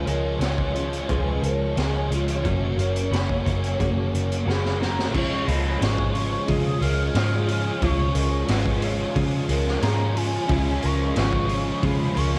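Shoegaze-leaning dream pop rock at 90 BPM in Db mixolydian, wistful and blissful, where a velvety, detuned synth lead with chorus and tape echo sings over shimmering, very quiet string-machine violins, a lo-fi arpeggiated guitar through a small old amp, biting and hollow-body overdriven riffs, a round, foam-muted bass up front and a gritty garage drum kit with a high-tuned snare and boomy kick that fills at 4.5 seconds before a second pass, a bright double-tracked overdriven guitar joining at 10.5 seconds, all soaked in cassette-home-recording haze.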